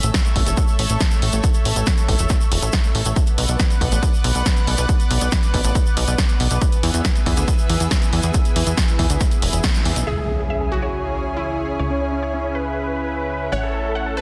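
This euphoric, soaring uplifting trance excerpt opens on a lush, thick unison pad holding sustained chords with chorus and sidechain pumping, over a plucky, funky analog bass that also pumps to the sidechain. An up-front, layered electronic kick drives the groove. Around it are a punchy analog drum machine with tape-flavoured hi-hat and snare dulled by a low-pass filter, and a grainy, vintage tube shaker sitting quietly in the background. A band accent at 9.6 seconds sets up the second section, where at 10.1 seconds an electronic impact hits and a huge, detuned supersaw lead takes the melody with delay and a filter sweep. Two pluck lines join it: a very quiet, round analog pluck with a warbling vintage character, and a glassy, crystalline wavetable pluck with chorus and delay. Light digital ambience surrounds the parts, and the master is dense and heavily limited.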